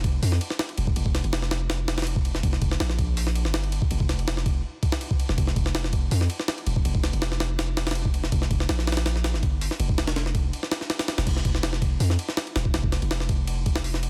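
A straight 4/4 jungle beat at 163 BPM drives this dark, frenetic drum and bass excerpt, its gritty, pitched-up sampler-style kit of thumpy kick, medium-tuned snare, hi-hat, ride and crash sitting up front in studio reverb, above a deep, sine-like 808-style bass whose long notes strike fast and decay, all within a dense, heavily limited modern master, with the kick dropping out from 10.5 to 11.3 seconds before the drop returns.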